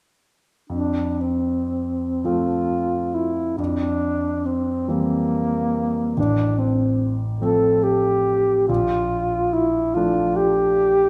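Tender and lyrical, this romantic classical fragment in F major moves in a slow, rubato 6/8 at 38-49 BPM (dotted quarters), with a dark alto saxophone singing the up-front melody with light vibrato, soft attacks and a smooth top, while a clear, intimate grand piano, its action noise audible, accompanies through F, C7/F, F/A and Bbmaj7, both playing from 0.7 to 11.1 seconds in a reverberant recital hall.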